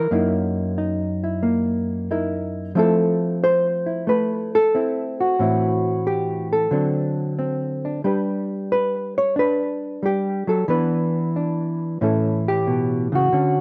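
Solo jazz for a single hollow-body electric guitar, this short excerpt from a longer piece moves at 91 BPM in 4/4 with a swung eighth-note feel that keeps the mood playful. The guitar plays alone for the full 13.6 seconds, fingered and clean, its dark tone sitting up front in the mix. Its range stretches from F#2 up to C#5. The harmony travels from an opening F#6 through Fmaj7, Am7 and D7 to G, then E5 and A7 near the 12-second mark. Recorded outdoors with little reverb, the sound is dry, letting every note of the swinging line come through plainly.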